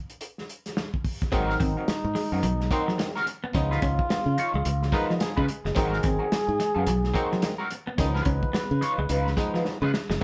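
Funk at 108 BPM with a 16th-note swing, funky and strutting, this excerpt opens on a muffled, lo-fi soul drum kit with a tight kick and a medium-tuned snare before the band enters at 1.3 seconds over a vamp moving between Ab9 and Db9. A growly, up-front fingered bass anchors the groove. Around it sit a twangy, slightly broken-up guitar through wah, a dark, compressed clean guitar riff in the background, and stringy clav stabs with a fill at 4.7 seconds. A clear trombone with light vibrato and scooped notes carries a jazzy second line, and a drum fill at 9.6 seconds closes the clip in a moderate room reverb.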